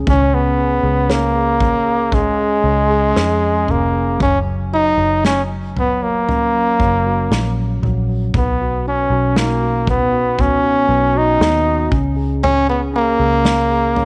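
Tender and hopeful, this slow pop ballad excerpt features a close-miked flugelhorn carrying the jazz-style solo melody up front, its warm tone shaped by vibrato, scooped notes and a slapback echo. Beneath it, a clean tine electric piano with a phaser plays through its built-in speakers, while a dark, round, foam-muted fingered electric bass adds punch. An acoustic drum kit played with bundle sticks, with a punchy kick, medium-tuned snare and toms, sits in a small room with light reverb as the chords move from C# to F#, Badd9 and A#m7/C#.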